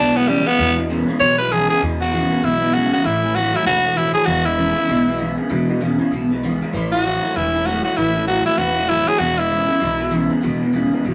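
Upbeat and rollicking, this swung rock excerpt in E major moves at 195 BPM, led by an up-front, gritty tenor saxophone with vibrato that solos for the first 1.8 seconds and carries the melody until 10.3 seconds, over a twangy, slightly broken-up electric guitar riff through a phaser, a bright, full-bodied picked steel-string acoustic guitar with finger squeak, and a woody, thumpy pizzicato upright bass, all set in moderate studio reverb with vinyl crackle.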